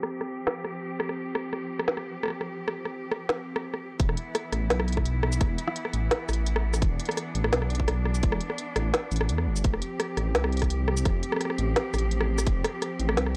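A dark, detuned sawtooth bass rumbles up front once the drop lands at 4.0 seconds, its beating unison tone sitting deep and sustained beneath this tense, spacious half-time drum and bass cut from a longer piece. An overdriven, hard-clipped electronic kick arrives with it, punching hard with the grit of a small room. From the start, an organic-sounding electronic kit sets a half-time feel with woody snare, rim clicks, shaker and smooth hi-hats. A bright cello section bowed with vibrato holds sustained chords throughout, opening under a filter sweep before the drop and pumping with sidechain compression. The harmony moves from F5 to E7(no3) and then to F, and the whole mix has a dry, filtered hardware character with little reverb.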